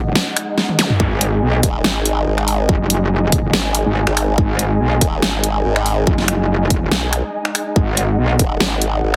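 Heavily compressed and radio-like with a light reverb, this menacing excerpt of heavy wobble dubstep in G# minor moves at 142 BPM with a half-time, lightly swung feel. Up front, a metallic, saturated FM wobble bass starts at once and is joined at 1.6 seconds by a detuned sawtooth wobble bass swept through a formant filter, both thickened with chorus and overdrive. A dubstep kit of finger snaps, hi-hat, toms and a huge snare adds a fill near the start, after which a punchy layered electronic kick enters at 1 second, while a brief electronic zap sits in the background at 0.8 seconds. Beneath it all, a dark, woody string section holds lush bowed chords with vibrato, pumped by sidechain and softened by a low-pass filter.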